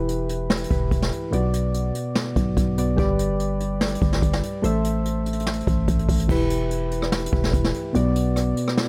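Hip hop trap in a half-time feel, this eerie, melancholic fragment cut from a longer piece is built on soft, round electric-piano-like synth keys with chorus and a filter sweep, moving through Em, Bm, G and Am before a new section returns to Em at 6.3 s. Beneath them a growling, buzzy 808-style bass supplies fast-attack, decaying low notes. An acoustic jazz brush drum kit sits up front with dark cymbals, a boomy kick, rim clicks and a medium-tuned snare, and the small room ambience lends it a natural sound.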